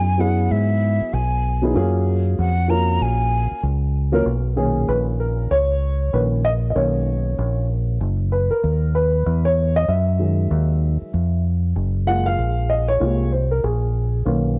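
Jazz-hop with a relaxed, cool mood at 96 BPM in B major, where a breathy, hollow flute with vibrato carries a short melody until 3.6 seconds over dark, woody upright piano and a round, up-front dub bass, before the piano takes a smooth solo from 4.3 seconds through major-ninth chords, all framed by cassette-tape character and a small-room ambience.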